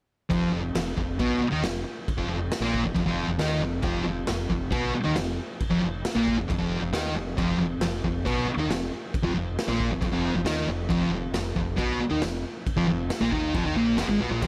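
A raw, gritty garage recording with light reverb, cut from a longer piece and tuned to A4 = 435 Hz. Set in straight 4/4, this garage rock duo or trio sound is led by a thick, double-tracked fuzz guitar playing a picked, distorted riff that sits up front, ranging from F2 to Eb4. Beneath it, a growling fingered electric bass, taken both direct and amped, adds an overdriven, punchy low end between F1 and Eb2. The acoustic drum kit sits up front in a bright stone room with a pumping ambience, its saturated, rolled-off tone built from a punchy kick, a medium-tuned snare, crash and ride cymbals. The guitar, bass and drums play together from 0.3 to 14.5 seconds through a single section.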